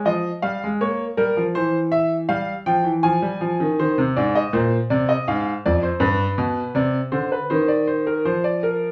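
A steady, straight pulse in 3/4 at 80 BPM gives this short fragment of a baroque-style two-part invention its measured, unhurried gait. A solo grand piano carries the whole piece, ranging from F2 up to Ab5 across roughly 8.9 seconds, with a brilliant, vintage tone placed up front in the sound. The mood is serious and contemplative, opening on Fm, with harmony that moves through Bbm, C/E, Cm, Fm/Ab and G before settling toward Cm/Eb and closing on Bb/F. The tuning sits slightly low, at A4 = 439 Hz. A moderate studio reverb and a small room ambience give the piano a modest sense of space, and the fragment is cut from a longer piece.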